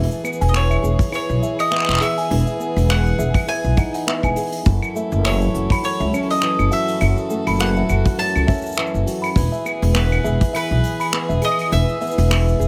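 A growly, woody pizzicato upright bass sits up front in this pastoral, delicate folktronica excerpt, moving at 102 BPM in 4/4 with a light sixteenth-note swing in E major. A fingerpicked old ladder-braced acoustic guitar with dark, boxy tone spins arpeggios through a tape echo, while a rich string quartet played sul tasto with light vibrato holds intimate sustained chords in the background. A bright, double-strung mandolin takes the melody from 0.5 seconds, also passed through tape echo, and a tinkling music box adds a soft second line with its own echo. Jazz brushes bring an airy, polished pulse with cabasa, claves, finger snaps and hi-hat, and a punchy acoustic kick joins up front between 1.0 and 10.5 seconds. The harmony moves from Emaj7 to F#m7 and settles on E, all set in a small room ambience.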